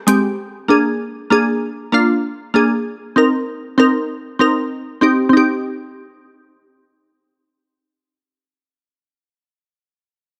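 A glassy wavetable pluck opens this short dancehall excerpt at 0.1 s, setting a sunny, summery mood at 97 BPM in a straight 4/4 feel in Eb major. This single accompanying synth sits up front with a crystalline, slightly nasal tone, full-bodied and detuned, with a fast attack and a decaying tail. A noise layer, a filter sweep and a chorus effect add shimmer and movement to its digital character as it moves between Ab3 and Bb4. The harmony steps from Bb7 to Cm7, then settles on Eb6 as a new section begins at 5.3 s. The pluck rings on until 8.5 s, framed by light reverb and a digital ambience that keep the bright sound airy and close.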